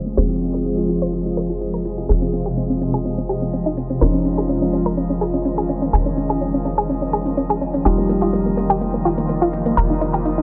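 Softened by light reverb and a low-pass filter, with a filter sweep running across the whole mix, this bittersweet, emotional progressive house excerpt at 125 BPM in F minor moves from Fm through Dbadd9/F to Ebadd9/F as a shimmering, up-front ambient pad holds sustained chords, a nasal analog pluck spins chorused, delayed arpeggios, a felt-muted upright piano adds dark, intimate stabs through its own low-pass filter and delay, and a punchy, saturated sequencer bass drives on F1, while a glassy harmonics texture drifts in the background and very quiet metallic electronic hi-hats and grainy maracas enter at 0.1 seconds.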